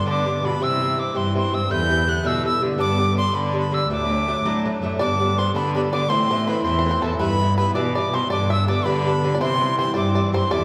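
A cheerful, lively Celtic jig in 6/8 at 109 BPM opens with a bright, airy wooden whistle carrying the melody up front with vibrato, over mellow, metallic picked bouzouki chords and a rich, gut-string bowed cello bass. At 5.0 seconds a twangy, fingerpicked bluegrass banjo joins with a percussive second line as the tune repeats. The whole excerpt sits in the resonant reverb of a recital hall or church.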